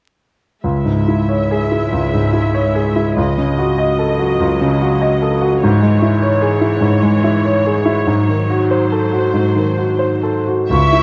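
Close, detailed microphones and a light reverb frame this brief classical passage, with a faint vinyl crackle running beneath it. It is cut from a longer piece, and it is passionate and brooding, set in C# minor and moving in a rubato 4/4 that drifts between 81 and 103 BPM. A grand piano carries the melody from 0.6 seconds, present and up front, reaching from deep in the bass up to D#5. Just behind it, a bowed viola section supplies an intense, clear accompaniment with vibrato, moving through C#m, a D#m7b5 over C#, C#m over G#, and finally a tense G#7b9. At 10.7 seconds the texture briefly blooms: a lush, focused violin section sustains a high E5, an airy, metallic concert flute sounds a distant C#6, and a smooth, even cello section anchors a low C#2, all with vibrato. This late arrival of fuller orchestral color lends the closing moment added ensemble weight alongside the piano's line.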